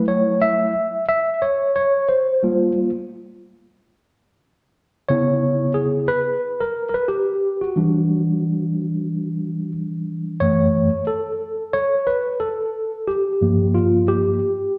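A worn, slightly out-of-tune tine electric piano, lightly overdriven and up front as if through built-in speakers, plays alone in this cool, mellow hip hop excerpt with a swung sixteenth-note feel, moving through F#m7, Gm7, C#m7 and Em9 before returning to F#m7 at 10.4 seconds, all wrapped in a wet recital-hall reverb and a dark production.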